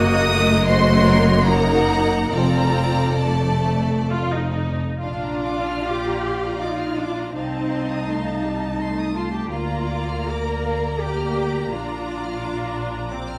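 Heard through a moderate recital-hall reverb with lossy artefacts, this lyrical excerpt of a slow romantic movement for string orchestra in Bb major sways in rubato 3/4 at 65-87 BPM, as a close, warm violin section sings the melody over a distant second violin line, smooth rich violas, dark, expressive cellos gliding with portamento and focused, up-front double basses, the harmony darkening through Ebm/Gb before settling from F onto Bb at 5.0 seconds.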